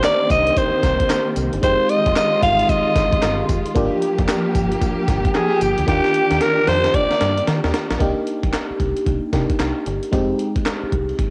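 Swung sixteenths at 113 BPM drive this slick, punchy new jack swing excerpt in C minor, where a compressed, gritty breakbeat kit with a thumpy kick, high-tuned snare, handclaps, hi-hat and tambourine sits up front and plays a fill from 5.9 seconds, a deep, round fingered electric bass enters at 0.3 seconds, a glassy, bell-like FM electric piano with chorus and phaser accompanies chords such as Cm9, Fm7, Gm7 and Ebmaj7, a warm studio string section with vibrato and portamento holds sustained chords until 8.0 seconds, and a raspy, growling alto saxophone with tape echo carries the melody, the whole home cassette recording set in moderate spring reverb.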